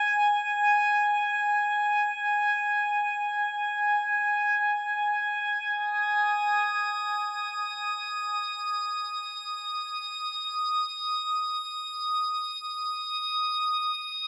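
Floating in free time with an unmeasured pulse, this ambient passage is cut from a longer piece and feels spacious and reflective. A single glass-harmonics texture plays solo for the full 14.3 seconds, sitting up front and holding to a high register between G#5 and D#6. Its glassy, sine-like tones swell in on slow attacks, sustain calmly and fade on long releases, with drifting overtones that give the sound a gentle sense of motion. Chorus, delay and built-in reverb color the part, and the whole recording sits in a huge, wet ambient space with a reverb time of 7.5 seconds, carrying the character of cassette tape. The music moves into a new section at 5.7 seconds.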